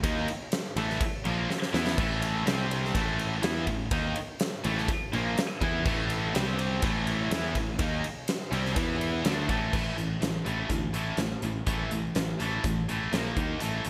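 An aggressive, heavy hard rock piece at 124 BPM in A minor opens with three bright, picked distorted guitars, one overdriven and double-tracked, one high-gain and one tight, sitting in the background behind a punchy picked electric bass and an up-front arena drum kit with a fat snare and gated reverb, which plays a fill at 1.5 seconds; the 1980s-style digital production carries light small-room reverb, and the double-tracked guitar stops at 9.7 seconds as the riff moves into a new section, with the chords shifting to Bb5 and D#5 before the recording cuts off at 13.9 seconds.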